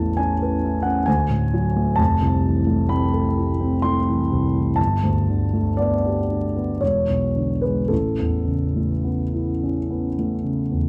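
A gently swaying three-beat metre moves with a free, rubato feel, stretching and relaxing as this impressionist classical excerpt unfolds over about 10.9 seconds. A solo grand piano carries the whole passage, sitting up front with an intimate, natural tone, long sustain and audible action noise. Its range stretches from deep bass notes up into the bright upper register, and its harmony drifts through colourful chords such as Aadd9, Fmaj7, Gadd9 and E6 before returning to Aadd9 at 7.9 seconds. The mood is serene and dreamy. Close, detailed microphones capture the instrument, with a light reverb and a vinyl crackle lending the recording a faintly nostalgic, old-record character.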